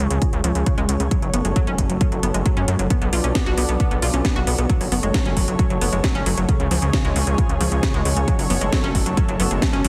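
Heavily compressed and radio-like in a moderate hall-style reverb, this euphoric, emotional uplifting trance excerpt at 134 BPM in F# harmonic minor sets a thick, airy unison pad of sustained chords and a round, detuned analog pluck arpeggio, both chorused, pumping and filter-swept, with dub echo on the pluck, over a gritty, saturated synth bass, a house kit with cracking snare and metallic hi-hats, and a punchy, tape-warm electronic kick, moving through C#, F#m, Bm7 and back.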